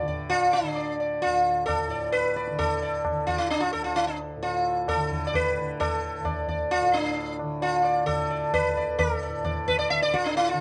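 Solemn and longing, this short fragment of Hindustani classical music moves at 131 BPM in a seven-beat cycle with a straight feel, tuned slightly sharp to A4 = 444 Hz. The sitar carries the melody between D4 and E5, its bright, plectrum-plucked tone buzzing and shimmering with sympathetic strings as it sits up front. Beneath it, the tanpura holds a mellow, softly plucked drone from D2 to D3, its own buzz and shimmer sitting well back in the balance. The tabla enters at 0.1 seconds with a high-tuned, ringing voice, heard close and dry, and stops at 10.5 seconds. Recorded outdoors with little reverb and a top end that tops out around 10.3 kHz, the sound is intimate and unadorned, cut from a longer piece.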